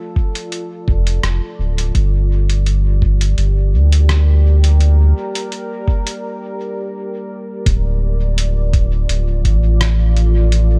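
Ambient dub in a hazy, meditative mood, cut from a longer piece: a deep, detuned sawtooth pad with chorus and reverb holds slow-blooming chords from 0.0 s, a muffled, thumpy sampler-style kick sits up front beside a round, nasal analog bass with tube saturation, and a compressed lo-fi kit of hi-hat and rim click trails dub echo, the drums re-recorded in a small room and everything set in a digital ambience, with a break at 6.2 s before a new section opens at 7.7 s.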